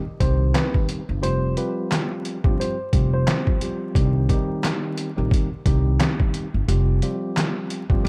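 An overdriven, sampler-style drum kit sits up front in this dark, reflective boom-bap hip-hop excerpt, its pitched-down, muffled sound built from a thumpy kick, a medium-tuned snare, hi-hat and handclaps with a compressed, swung feel. Close beside it, a woody upright bass played pizzicato on gut strings carries the low end from 0.2 seconds. A mellow tine electric piano supplies clean, direct accompaniment through the whole passage, coloured by a cassette-tape character. A vintage-toned upright piano, smooth and shadowy with digital delay, offers a brief melody that ends at 3.9 seconds. The harmony moves between C minor and F suspended second, and light reverb, vinyl crackle and a warm, dusky production frame the cut from a longer piece.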